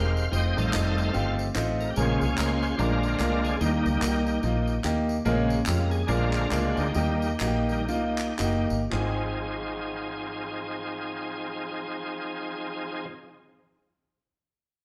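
A shouting, lightly overdriven tonewheel organ with slow rotary speaker, chorus vibrato and key click takes the lead from the opening, carrying a solo over a brilliant grand piano and a round, foam-muted fingered electric bass in this uplifting, reverent uptempo gospel passage in Ab major, swung in 4/4 at 109-146 BPM. Close, dry tambourine and group handclaps join at 0.2 seconds and drop out at 9.2 seconds. The tempo slows between 5.2 and 8.9 seconds before the band settles on an Ab6 chord, with the live-in-one-room sound wrapped in a large, wet studio reverb.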